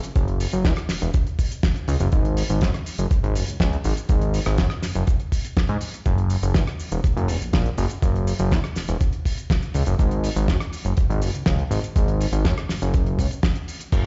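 Up front, a fat analog bass carries this groovy, sensual nu-disco excerpt, its thick, detuned sawtooth tone striking with a fast attack and decaying between notes across a range from E1 to G#2. Beside it, a sampler-style electronic kick hits gritty and thumpy, compressed and tape-warm, sitting forward in the mix. Under them, a damped 70s drum kit plays at a lower level, its dry acoustic sound built from a fat snare, rim clicks, hi-hat, cabasa and dark crash cymbals, with a small room ambience around the drums. The track moves at 122 BPM in a straight 4/4, and all three parts run from the first moments to the end of the 14-second cut. The overall sound feels like a big system playing in a bare room with a large studio reverb, and the top end is rolled off above 7.7 kHz.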